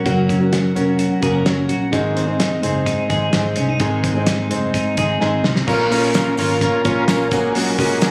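This bright, breezy jangly indie pop excerpt opens with a full-bodied, fingerpicked plugged-in steel-string acoustic guitar and a twangy twelve-string electric playing arpeggios through harmonic tremolo and slapback echo, with a thuddy, cloth-damped drum kit and a round, foam-muted vintage bass settling in at a straight 128 BPM over Gb and Ab chords. After a drum fill, a buzzy combo organ with light vibrato and a jingly tambourine in the background join at 5.7 seconds as the harmony moves to Bbm and Gbadd9. Captured on a phone in the room with moderate large-studio reverb and compression, the sound keeps the drums and acoustic guitar up front.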